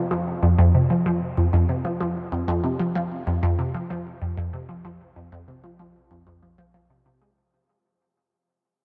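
A vast, echoing space surrounds this brief ambient fragment, its huge reverb trailing for around 8.7 seconds and giving every note a long, cavernous tail. It moves at 95 BPM in a straight 4/4, with a cosmic, mysterious mood. The only voice is a resonant blip pluck, heard alone from 0.0 to 7.3 s and sitting up front in the mix, ranging from F2 to Ab3. Built from pulse and sawtooth waves with a noise layer and a filter pluck, it has a fast attack and short decay that make it sound juicy and squelchy. A phaser, lush chorus, delay and a cassette tape character colour the synth, while the whole passage fades out across its length, as if cut from a longer piece.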